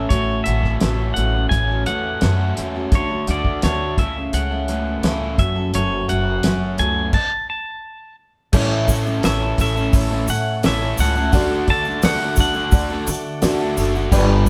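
This warm, nostalgic folk rock and heartland rock excerpt opens with a clean, up-front pedal steel guitar carrying the melody, played with fingerpicks and slide, with volume swells and a compressed tone. Beneath it sit a bright, freshly strung dreadnought acoustic guitar, picked with audible finger squeak, and a crunchy, double-tracked overdriven electric guitar playing a riff. A woody, thumpy upright bass played pizzicato and a cloth-damped drum kit arrive almost at once, the drums dry and up front with a fat snare, tight kick and dark cymbals. At a straight 86 BPM in 4/4 the band moves through A, D, A/C# and F#m before a stop at 7.1 seconds. At 8.5 seconds the music shifts from A major to A mixolydian, as a dark, boxy grand piano and a grainy tube shaker join in the background, along with a very quiet, flute-like tonewheel organ through a slow rotary speaker. The whole band sounds as if playing live in one room, with light reverb.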